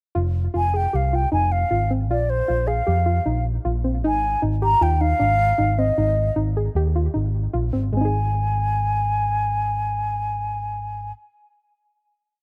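Progressive instrumental band music in a straight 5/4 at 154 BPM in Ab major, bright and intricate, where a soft, round synth pluck with chorus and tape echo spins a quiet arpeggio ostinato, a dark, amped picked electric bass holds simple roots and fifths up front, and a mellow, hollow silver concert flute with airy vibrato carries arching motif-based phrases from 0.6 seconds over Fm7, Bb9sus4 and Ab5 before settling on a final Ab chord at 7.9 seconds, all within a rough home-demo mix with studio ambience.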